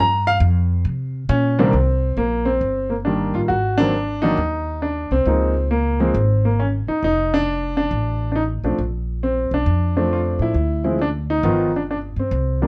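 The sound is dark and close, with a moderate studio reverb giving the room a short, intimate tail. This is a late-night, swinging jazz cut in C minor, taken from a longer piece, moving at 136 BPM in 4/4 with swung eighth notes and tuned slightly high to A4 = 442 Hz. A baby grand piano with a warm, natural, short-sustained tone sits up front carrying the melody, and it takes a brief solo turn in the opening 1.7 seconds over a suspended F chord and a bare C7. A pizzicato upright bass on steel strings, woody and warm, shares the front of the mix and holds down the low end. The harmony then drifts through Cm7, Ab7, Db6/9, F6 and Bbmaj9 before a brief chordless break and a tense G7b13.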